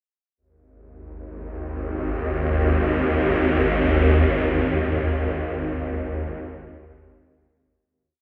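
Vast and ominous, this short ambient piece in free time centers on a single swarming drone that plays alone from 1.5 to 8.0 seconds, sitting low and up front with a tense, detuned, granular shimmer built from sine tones. Its slow attack, sustained body and long release evolve within a huge, wet reverb, and the piece fades out from 4.1 seconds to its close.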